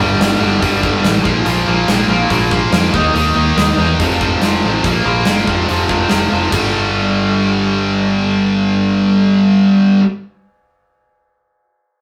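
Menacing, driving hard rock in G minor at 142 BPM, cut from a longer piece, where a high-gain, double-tracked distorted guitar riff sits up front over a growly fingered electric bass and a punchy, airy big rock drum kit with bright cymbals that drops out at 6.6 seconds, all captured in a rough rehearsal-room recording with moderate studio reverb.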